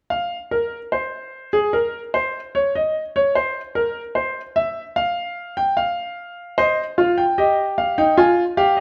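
A grand piano carries this contemplative, serious fragment of a baroque-style three-part fugue, playing solo from 0.1 to 8.8 seconds in a range from Eb4 to Ab5. Its tone is clear and smooth with a vintage character and a short sustain, and it sits up front in the mix. The tempo is a measured 74 BPM in a straight 4/4, tuned to A4 = 442 Hz. The opening unfolds over unharmonized lines before the texture settles onto Cm at 6.6 seconds and moves to Fmadd9 at 8.2 seconds. A moderate stone-room reverb with a 1.2-second decay surrounds the piano, and the passage is cut from a longer piece.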